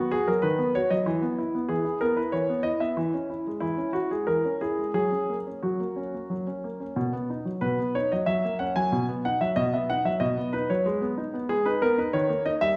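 Heard through a moderate recital-hall reverb, a clear, intimate grand piano sits up front with audible action noise and long sustain, playing a graceful, elegant classical-period sonatina in B major at 93 BPM in 3/4 with a rubato feel, moving through chords such as C#m/E, F#7, G#m and D#7 across this 12.8-second passage cut from a longer piece.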